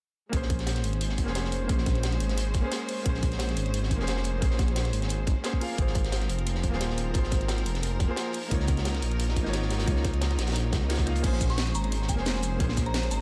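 A swelling, detuned sawtooth bass sits up front in this melancholic, dreamy liquid drum and bass excerpt, its saturated, menacing tone evolving under a filter swell at 176 BPM in Bb minor. Beneath it, a tight, tape-tinged electronic kick runs until 12.8 seconds, joined by two layered drum kits: a garage kit with a cracking snare, crash, hi-hat, rim click and shaker, and a gritty, dark breakbeat kit with a high-tuned snare and rolled-off top, both carrying analog delay. A clear grand piano plays an accompaniment part coloured by vintage 12-bit sampler grit and dub echo. Behind it, a lush, bowed string section holds sustained chords with vibrato and a slightly biting edge. The harmony moves through Bbm9, Ab69 and Db69 before returning to Bbm9, and at 11.5 seconds a soft, pure FM bell enters with a chorused, decaying melody high above. The whole mix sits in light reverb and leans heavily on echo.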